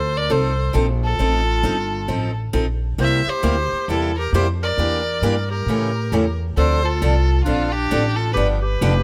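A bright, focused violin carries the melody in this lively, charming stretch of acoustic string swing in the jazz manouche style, cut from a longer piece. The single bowed violin sits up front with vibrato. A clear clarinet plays a punchy, forceful second line in jazz style with its own vibrato, sitting just beneath the violin. The upright bass is the most prominent part in level: a woody, thumpy pizzicato on gut strings with a dark tone, placed up front. From 0.3 s a picked steel-string parlour guitar with fresh strings supplies a boxy accompaniment through a harmony that moves from F7 through C7 and A7b9 to Dm7 and G7. Light reverb gives the ensemble a touch of room around its swung eighth notes.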